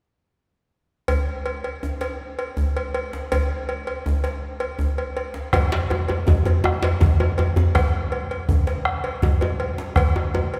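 Set in a straight 12/8 at 108 BPM, this earthy, powerful West African traditional drum ensemble excerpt opens at 1.1 seconds with a close, metallic cowbell and a warm, deep djembe buzzing with metal rattles under hard hands, then at 5.5 seconds a round bombo and a second, tight, cracking djembe join, both djembes up front, compressed and saturated, all bathed in the long, wet reverb of a church.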